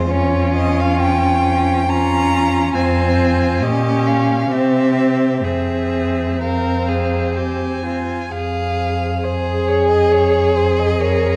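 In a rubato 3/4 at 61-70 BPM, this solemn, yearning slow romantic movement in F minor for string quartet, cut from a longer piece, sets a focused, vibrato-rich first violin melody over a second violin line, with a distant, expressive viola accompaniment sliding in portamento and an up-front cello bass, all bowed by single players through chords moving from Bbm/F to Fm, Gdim/Bb, C and back to Fm, in a dark production with vinyl crackle and moderate scoring stage reverb.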